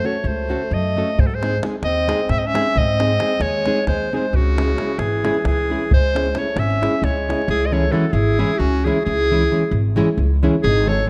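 A restless 7/8 at 266 BPM counted in eighths drives this bittersweet Balkan wedding-band fragment in C# harmonic minor, its chords moving from F#m to G# and settling on C#m by 4.3 seconds. A bright, up-front clarinet carries the classical-style melody over a mellow alto saxophone second line with light vibrato and a soft attack, while a full-bodied, fingerpicked nylon-string guitar accompanies with audible finger squeak and a woody pizzicato upright bass sits forward in the mix. A tight, close and dry davul joins at 1.2 seconds and drops out at 7.5, all within a dark, warm production and the moderate bloom of a recital hall.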